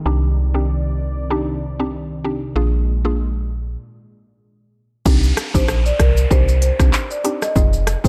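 Bouncy and tough, this short dancehall excerpt has a dark, warm production with little reverb and a swung sixteenth-note feel. It opens on a mellow, mallet-like synth pluck treated with chorus, phaser, sidechain pumping and a low-pass filter, while a smooth, detuned analog pad holds sustained chords beneath it, and a moment later a soft, round FM bass with a woody, decaying tone joins, sitting up front. A filter sweep runs through the opening five seconds, and the pad drops out at 3.8 seconds for a brief stop before the second section arrives at 5.1 seconds. There an electronic afro-pop drum kit lands up front with a deep kick, crisp hats, handclaps, rim clicks, shaker and a crash, its tape-warm sound carrying a small-room character, as bright, band-limited vintage maracas sit in the background and an electronic downlifter sounds. A close-miked, dry marimba played with medium mallets adds a full-bodied melody from 5.5 seconds, over chords moving between Cmadd9, Bb7 and Fm7.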